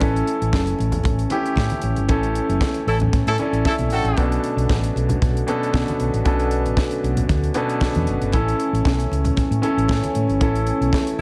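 A danceable, glamorous disco excerpt in B minor at 116 BPM opens with a tight, dry funk kit, a round, dark hollow-body bass and an intimate, clear grand piano with audible action noise all up front over Bm7, while a classical-style French horn section holds sombre sustained chords in the background and soft-handed, low-tuned congas sit very quietly beneath; a punchy pop horn section with light vibrato stabs in at 2.9 seconds alongside band accents and a piano fill, before the harmony moves to A at 8.3 seconds and a final horn stab lands at 11.2 seconds, all in a small room reverb.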